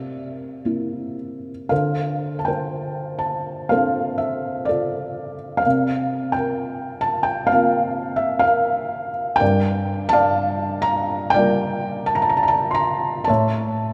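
Bathed in a long, wet church reverb, this peaceful classical fragment features a solo felt-muted upright piano, dark and intimate with its action noise clearly audible, drifting in rubato at about 62 BPM in D minor through a lyrical progression from C7 to Dm7 at 1.7 seconds, C7sus4, and Gm7 before settling on A at 13.3 seconds.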